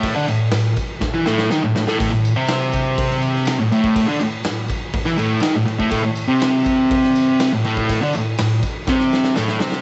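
A double-tracked fuzz guitar opens on an A5 chord, dark and distorted and placed up front, playing a picked riff that ranges from A2 to E4. A raw garage drum kit starts with it, its punchy kick, medium-tuned snare, crash and splash cymbals sounding gritty and saturated in a bright stone room that pumps around them. A jingly tambourine sits very quietly beneath, adding a faint shimmer of small-room percussion. The piece is rowdy and raw garage rock for a duo or trio at 122 BPM in straight 4/4, with drum fills breaking in at 1.0 seconds and again at 8.9 seconds. The whole take has a cramped, close feel from its small-room ambience and a rolled-off top end, cut from a longer piece.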